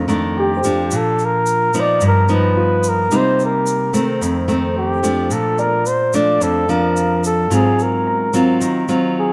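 A straight 4/4 bossa nova groove at 109 BPM sets a sunny, breezy mood in Bb major, in this short passage cut from a longer piece. The up-front nylon-string guitar carries the accompaniment from the start, fingerpicked in a classical manner with audible finger squeak, while a grainy, bright tube shaker adds its small-room texture just after. At 0.4 seconds a breathy flugelhorn takes the solo melody, mellow and jazz-inflected, with vibrato, scooped notes and a smooth top, sitting up front in the mix. Alongside it, a warm grand piano adds very quiet, natural-sounding accompaniment with short sustain. The harmony moves through colorful chords such as F13, Gaug7 and Ab13 across two matching sections, all bathed in a moderate echo chamber reverb.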